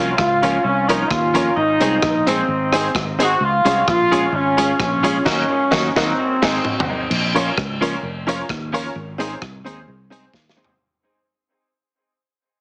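A mischievous, driving ska cut runs at 130 BPM in a straight 4/4, moving through Bbm, Ab, Db and Ebm chords. Up front, a punchy horn section carries the melody with light vibrato and a smooth top until 6.9 seconds, its loose pop-style lines trailing dub echo. A jangly, detuned honky-tonk upright piano adds bright, short stabs. A clean, picked electric guitar sits in the background as accompaniment, and both parts share the dub echo. Beneath them, a round, foam-muted fingered bass holds the low end while a gritty, saturated breakbeat kit with dark cymbals and a tight kick rides along, its drum fill landing from 6.2 seconds as a band accent closes the first section. The second half fades out from 7.1 seconds, and the whole piece is pressed into a heavily compressed, small-speaker radio sound with light studio reverb.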